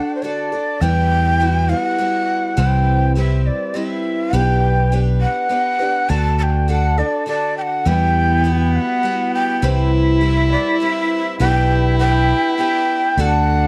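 A dry, close recording with a small-room ambience and a 1970s studio character frames this bittersweet, yearning folk excerpt in E minor, moving at 102 BPM in a straight 3/4. A breathy, end-blown shakuhachi carries the melody from the start, its bamboo tone marked by vibrato, a soft chiffed attack and an unsteady quality, with a slapback echo on its line. Beneath it, a picked twelve-string acoustic guitar supplies a bright, shimmering, octave-doubled accompaniment, while a fingered electric bass, round and dark, settles in at 0.8 seconds to anchor the harmony. A rich, reedy cello with a gut-string, period-style voice sounds only briefly at the opening, then returns at 7.9 seconds to add a bowed second line with light vibrato. The chords cycle through D, Emadd9, Cmaj7 and G/B, giving the passage a gently unresolved, longing quality.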